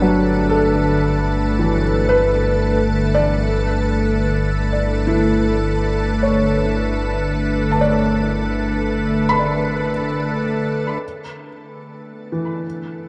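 Ambient and serene at 57 BPM in G lydian, this luminous excerpt places a soft, organ-like pad of detuned, chorused chords up front over felt-muted upright piano arpeggios with boxy action noise and analog delay, a round, deep analog bass holding G1 until 11.0 s as the harmony moves from Gmaj9#11 to Dsus2, and a reedy alto flute with vibrato in the background, its brief delayed phrases heard at the start and again from 12.1 s, inside a wet, echo-heavy spring-reverb space.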